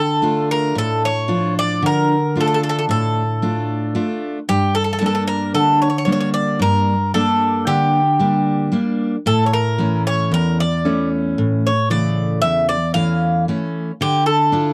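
Greek folk for a bouzouki band, melancholic and reflective, moving in 9/8 through a short passage cut from a longer piece. A bright, metallic bouzouki with doubled strings carries the picked melody up front, while a woody, full-bodied steel-string acoustic guitar with old strings supplies picked accompaniment beside it throughout. The dry, close 1970s-style studio sound carries a light reverb, and the harmony travels from Dm through Gm and A before settling on Dmadd9 at 14.0 seconds.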